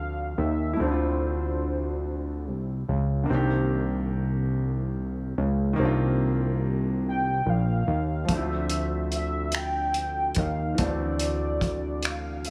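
Yearning and late-night, this slow six-eight R&B fragment at 48 BPM in D phrygian rests on a clear, short-sustained baby grand piano and a fat, detuned sawtooth bass sitting up front, while a velvety synth lead with chorus, vibrato and digital delay sings over Dm9 at the start and again from 7.1 seconds as Cm9 resolves back to Dm9, and a cloth-damped, thuddy drum kit with finger snaps, hi-hat and a tight kick joins at 8.3 seconds in a dry studio room.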